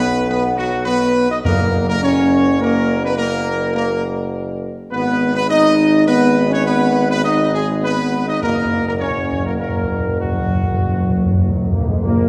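In a steady, straight 3/4 at 103 BPM, this majestic, solemn classical brass excerpt sets a clear, up-front trumpet section with light vibrato on the melody over sustained chords from a mellow, very quiet French horn section and a soft-attacked trombone section, anchored by a distant, roomy tuba on the bass, while round soft-mallet timpani enter briefly at 1.4 seconds and return with a fill from 8.4 seconds, all cast in a wet concert hall reverb heard from further back in the room as the harmony moves from B to F# to G# and back to F#.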